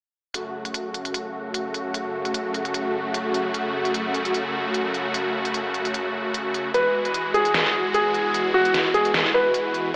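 Heavy and aggressive, this excerpt of wobble dubstep moves at 150 BPM in 4/4 with a half-time feel and a light swing on the sixteenths, set in F# minor. Huge, detuned supersaw chords sit up front from 0.3 seconds, their bright sawtooth unison sustaining from F#m to Eadd9 with a moving notch shaping the tone. An electronic, layered drum kit runs alongside, its deep snare and crisp hats carrying a tape-like warmth and a touch of studio reverb. At 6.7 seconds a clear concert grand piano enters with a short melody between F#4 and B4, its worn, present tone with deep bass and short sustain trailed by a digital delay. The whole mix sits in a lush hall reverb yet is filtered through a narrow AM radio sound, giving the massive chords and piano a boxed-in, broadcast character.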